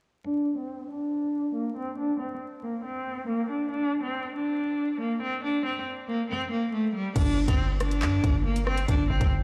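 A big sound system in a bare room sets the scene, with a large studio reverb and a layer of vinyl crackle, for this menacing, dark drill excerpt cut from a longer piece. It sits at 139 BPM in a half-time 4/4 feel, in G minor, tuned to A4 = 436 Hz. A clear, focused solo cello opens the track at 0.3 seconds with a bowed melody between G3 and D4. Its vibrato sits up front, shaped by a low-pass filter, tape echo and a filter sweep across the opening section with the harmony unstated. At 7.2 seconds the music shifts to a G5 power chord as the drill drum kit and a hard-hitting 808-style bass arrive together. The electronic kit brings a hard-clipped kick, bright hi-hats, handclaps, rim clicks and a crash with a tape-warm polish, while the punchy sine bass, layered with noise, hits with a fast attack and a decaying tail, up front between G1 and G2.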